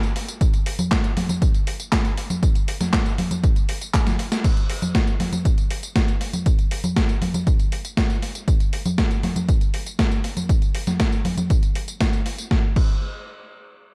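A straight 4/4 pulse at 119 BPM drives this nostalgic, melodramatic italo disco excerpt, where an up-front, overdriven 80s digital drum machine with a sampler-style edge lays out congas, handclaps, hi-hat, tambourine, crash cymbal and a gated-reverb snare, joined at 0.4 seconds by a dry, punchy analog kick, with a drum fill at 3.9 seconds leading into the next section inside a dark production touched with light reverb.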